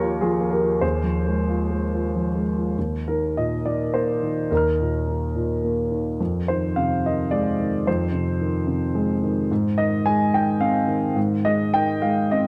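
Neoclassical minimalist piano in a rubato 3/4, peaceful and hopeful in mood, played by a solo baby grand that sounds worn and up front, its long sustain carried across a range from Eb2 to F6. The harmony drifts from Bbm and Fm over an Eb bass into an open Ebsus2 at 2.8 seconds, then moves through Fm7 to a settling Ab chord at 9.5 seconds. A moderate spring reverb and a dark production give this short passage, cut from a longer piece, a warm, enclosed glow.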